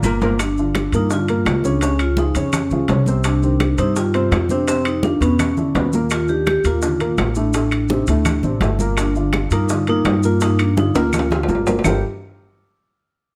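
A short drum fill opens this sultry, fiery Afro-Cuban jazz excerpt in G minor, with a dark upright piano, pizzicato upright bass and a bed of percussion all sounding from the start at a straight 168 BPM in 4/4. At 0.4 seconds the vibraphone takes the melody, played with medium hard mallets and motor off for a metallic, ringing tone, as claves enter in the background. The bass sits up front, thumpy with gut strings, while the piano, also up front, accompanies with a mellow, short-sustain sound through changes such as Gm7, C#, Cm and Ebsus2 before settling on Gm9. Congas with a thick, damped skin stay in the background, alongside tight, high-tuned cowbell and bongos with a vintage, band-limited character, close, dry agogo bells and timbales with their metal shell, woody claves and grainy maracas. Another fill arrives at 11.0 seconds, and light reverb lends a touch of space.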